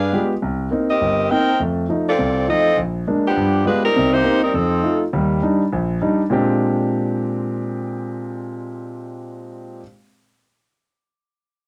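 Swung eighth notes in 4/4 drive this joyful, brassy jazz fragment, cut from a longer piece, in which an up-front saxophone section carries the melody until 5.0 s over an intimate concert grand piano with deep bass, long sustain, audible action noise and a cassette-tape tint, which then plays on alone until 9.8 s as the chords move from Cm7 and F7 toward Ebmaj7 and Bb13 in a small home room with moderate ambience.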